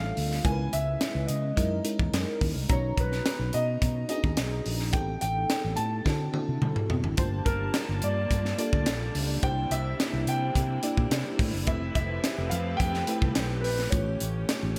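Bright, 1980s-style digital production with light reverb and small-room ambience frames this slick, nocturnal jazz-funk pop cut in a straight 4/4. A concert grand piano with lush chorus carries the melody over a dreamy, detuned FM electric piano layered with a soft pad, while a dark, round fretless bass and a crisp, up-front fusion kit with a high-tuned snare and tight kick hold down the low end and beat. After a drum fill from 6.1 to 7.2 seconds, a distant, bowed string section enters at 7.2 seconds with smooth, vibrato-tinged sustained chords in the background, as the harmony moves through extended seventh and ninth chords.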